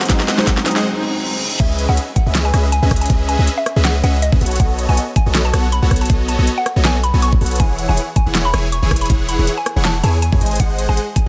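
Swung sixteenths ride over a half-time pulse in this lush, dreamy future bass passage, cut from a longer piece. It opens with a brief build-up where a soft, felt-muted upright piano with pumping delay, a very quiet ethereal pad, and a round, tine-like thumb-piano pluck with chorus sound together, as a drum fill and a filtered arpeggio lead into a short break with a riser and reverse cymbal. At 1.6 seconds the drop lands: a deep, boomy 808-style bass sits up front with a knocking electronic kick, while the pop kit adds a fat snare, rim clicks, crash and crisp hats. Huge, bright detuned supersaw chords run throughout, swirling with phaser and a cassette-tape tint and pumping against the kick. Over them a woody, mallet-like synth pluck carries the melody, coloured by chorus, phaser and digital delay, all set in light reverb as the chords move from C#m7 through B7 and E6 before returning to G#7.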